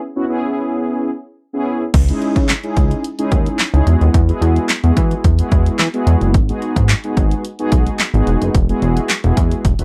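Dance-pop with a confident, driving feel, this excerpt opens on mellow, detuned synth brass playing alone through a short break before a glossy chorused synth bass and a punchy analog drum machine with kick, snare, hi-hat, handclaps and crash cymbal arrive at 1.9 seconds, both bass and brass pumping with sidechain compression, while a very quiet, crisp group handclap joins at 2.5 seconds, all captured in a dry, close 1970s-style studio sound.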